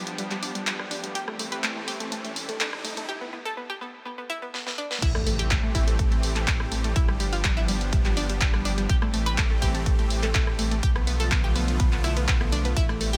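Bittersweet and driving, this progressive house section builds over a lush, detuned supersaw pad, a round analog pluck arpeggio with a filter sweep, phaser and delay, a thick saturated sub bass, and a very quiet riser and impact, pausing for a break at 3.1 seconds before a drum fill leads into the drop at 5.0 seconds, where a punchy, up-front electronic kick joins the big-room kit and its huge snare, with pad, pluck and bass all pumping to the sidechain.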